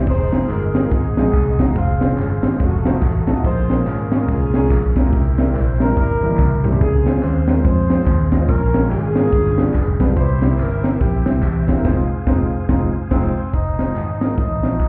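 Uptempo gospel in F minor at 143 BPM with a swung, soulful and fervent feel, this excerpt sets a tight, clear saxophone section carrying the melody through tape echo over woody, slightly detuned upright piano, a faint reedy tonewheel organ with key click and slow rotary, a dark, round fingered electric bass up front, a crisp fusion kit with high-tuned snare and a drum fill at 6.0 seconds, and distant tambourine and handclaps, the whole band hitting an accent from 11.8 seconds before a breathy, whispered tenor saxophone takes over at 13.1 seconds, all heard muffled as if through a wall of a club.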